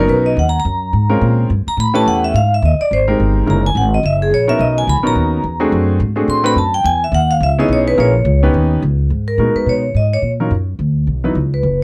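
A dry, close studio sound in a 1970s vein frames this moody, late-night small-group swing and bop fragment, where the up-front vibraphone with medium hard mallets rings metallic with a fast motor vibrato as it carries a solo melody until 9.1 seconds, while a clear concert grand piano with deep bass comps in a natural tone and a woody pizzicato upright bass on steel strings anchors the lush, shifting jazz harmony.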